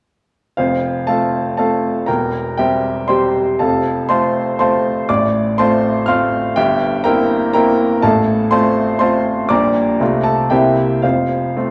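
A clear baby grand piano sits up front from 0.6 seconds, playing a heroic, brilliant virtuoso classical study in F major at 120 BPM in 3/4, with a rubato feel and a range running from E1 up to F6. Its intimate, natural tone carries long sustain and audible action noise, set in a wet recital hall reverb and colored by worn cassette tape with warbly pitch drift. Cut from a longer piece, the passage moves through harmonies around F and C7 before settling back on F at 11.0 seconds.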